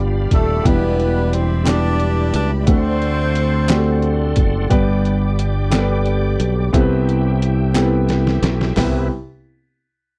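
Intimate grand piano, a reedy tonewheel organ through a fast rotary speaker and a growly, up-front fingered electric bass open this reverent, hopeful slow gospel passage in a straight 6/8, joined at 0.3 seconds by a tight horn section carrying the melody with light vibrato and a gritty, pitched-down sampler-style drum kit with a thumpy kick, while crisp group handclaps sit in the background from 1.7 seconds, a drum fill arrives at 7.8 seconds, and the whole has a dry, close 1970s studio sound.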